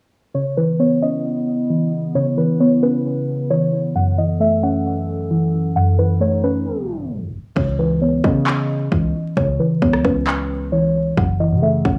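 A soft, round pluck sits up front in this dark, eerie trap excerpt, its chorused, tape-echoed tone carrying the accompaniment beneath a melody from muted, felt-like synth keys with a vintage warble. Both parts move through a filter sweep, while a nostalgic, lo-fi pad with a slow attack and long release holds sustained chords between 0.8 and 7.5 seconds, bathed in its own reverb. The harmony shifts between C#m7 and F#m7, and a tape stop joins a faint reverse cymbal to lead into the second section at 7.6 seconds. There a hard-hitting 808-style bass arrives, punchy and heavy, alongside a trap drum kit of handclaps, rim click and a hard-clipped, up-front kick, with the hi-hats muted. The half-time feel, echo-heavy mix, vinyl crackle and light reverb lend the whole cut a hazy, shadowy character.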